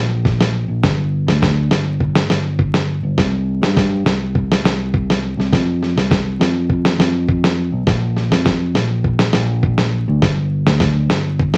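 Highlife guitar band groove, carefree and warm at 102 BPM in a straight 4/4, taken from a longer piece. A fingered electric bass opens the track at 0.0 seconds, sitting up front with a dark, round and punchy tone that comes across direct and amped, moving between G1 and G2. A sampler-style soul drum kit joins at 0.3 seconds, its kick and snare compressed and gritty, with a thumpy kick and a medium-tuned snare placed close to the listener. The two parts carry the whole passage together through to 11.6 seconds as a single section. A moderate studio reverb and a layer of vinyl crackle lend the sound a dusty, warm character.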